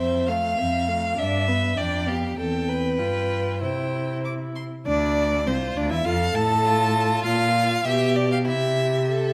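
The excerpt opens with all four members of a string quartet playing together in a quick, spirited classical-period movement in 2/4 at 99 BPM, its cheerful character shaped by a flexible, rubato feel. The first violin carries the melody up front, its tone rich and focused with vibrato. The second violin traces a smooth, even second line from a more distant position. The viola supplies a mellow, evenly bowed accompaniment with a soft top, and the close cello anchors the bass with a full, vibrant sound. The harmony settles in C major before shifting toward F major at 4.9 s, and the passage closes back on a C chord at 8.5 s. A moderate recital hall reverb lends the ensemble a natural sense of space.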